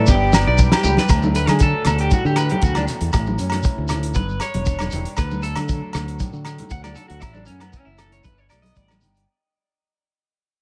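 A small room with light reverb frames this short cut from a highlife guitar band number, a danceable piece in D major at 117 BPM in a straight 4/4. A fingered electric bass sits up front, dark and round, over a soul drum kit with a fat snare, tight kick, pumping room and rolled-off top, playing hi-hat, kick, rim click and snare. Bright, damped congas in the background, a grainy shekere and ringing, dry agogo bells fill out the percussion. A twangy, slightly broken-up electric guitar picks arpeggios through subtle chorus and tape echo, while a picked steel-string acoustic guitar provides accompaniment behind it. A dark, clean electric guitar melody with tape echo and reedy, sweet accordion chords with light tremolo tuning open the track, the guitar ending at 0.8 s and the accordion at 1.1 s. From 1.1 s, a clean electric guitar solo runs over G, D and A chords as the music fades out.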